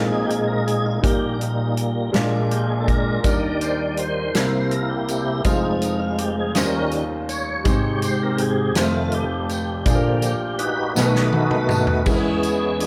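Hopeful and jubilant, this slow gospel excerpt in 6/8 at 54 BPM in Eb major is led by a full, lightly overdriven tonewheel organ soloing up front with slow rotary speaker and chorus vibrato, over a woody upright piano with long sustain and a punchy, small-room acoustic drum kit with a medium-tuned snare, while a jingly, distant tambourine joins at 3.2 seconds and the drums and piano play fills from 11.0 seconds as the chords move from Bb9sus4 through Ebmaj7, Abmaj7 and B7 to E6.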